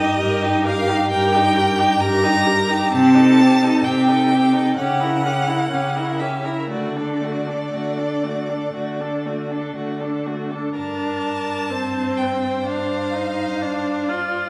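A solemn, elegiac slow movement for string quartet in G minor opens with all four bowed players together at a rubato 58-67 BPM, the first violin's focused, vibrato-laden melody up front over the second violin's warm, even inner line, the viola's rich accompaniment with expressive portamento, and the cello's smooth-topped bass, as the harmony passes through a C#dim7 and D before settling on Gm and G7sus4 in a reverberant recital-hall space, in a fragment cut from a longer piece.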